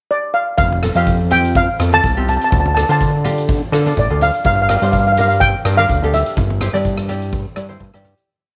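Carefree and bouncy, this short calypso piece moves at 125 BPM in 4/4 with a gentle sixteenth-note swing, set in F major. A shimmering steel pan, struck with soft rubber sticks, opens alone in a brief pickup and stays up front, carrying a mellow, motif-based melody built from sentence-like phrases. At 0.6 seconds a fat, detuned analog bass arrives with a syncopated figure, its sawtooth and wave-folded tone shaped by a filter sweep. A polished street-band drum kit comes in at the same moment, its boomy kick, hi-hat and rim click setting a calypso groove in an airy big room. Very quiet, damped congas add a loose pattern underneath, and a fingerpicked ukulele soon joins with light triad chords in a rhythmic role. The harmony moves from Fadd9 through Dm and Gm to a rootless C/G, and the piece fades out from 6.4 seconds to its close.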